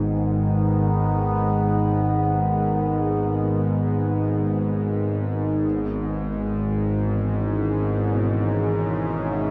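In free time, this desolate, unsettling dark ambient drone fragment rests on a tense, string-like bowed drone with a wave-folded sawtooth edge and vibrato, sitting up front beside an evolving, resonant pad coloured by chorus, phaser and shimmer reverb, while a very quiet, mellow grand piano traces long-sustaining arpeggios beneath, all held within a vast, echoing cathedral space for the full 9.5 seconds.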